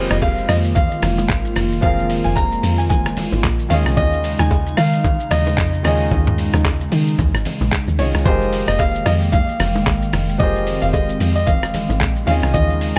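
Two pianos, a hollow pad and a deep log drum bass sound together from the opening moment of this soulful, hypnotic amapiano excerpt in F minor, set at 112 BPM in 4/4 with a 58% swing on the sixteenths. A clear concert grand carries the melody between C5 and Bb5, its smooth, vintage tone touched by digital delay, while a polished baby grand supplies accompaniment. The soft, flute-like pad holds sustained chords with chorus and sidechain pumping, moving between Fm11 and Eb7sus4, and the round, percussive log drum bass anchors the low end with a dark, fast-attack punch. At 0.1 seconds a lo-fi sampler-style drum kit arrives up front, muffled and pitched down with a thumpy kick, handclaps, hi-hat, rim click, shaker and toms, and bongos and congas join in the background at 0.2 seconds with a ringing, hard-handed sound. Light reverb gives the mix a gentle sense of space, and the tuning sits slightly low at A4 = 436 Hz.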